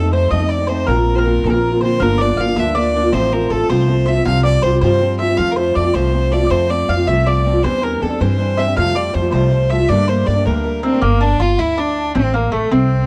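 A dry, close 1970s-style studio sound with small-room ambience frames this wild, spirited Celtic jig fragment in 6/8, where a clear, smooth fiddle with light vibrato carries the melody up front, a mellow, round mandolin picks a double-string second line, a bright, boxy parlour guitar fingerpicks the accompaniment with audible finger squeak until it drops out at 11.0 s, and a woody, thumpy upright bass on gut strings plucks a dark pizzicato foundation.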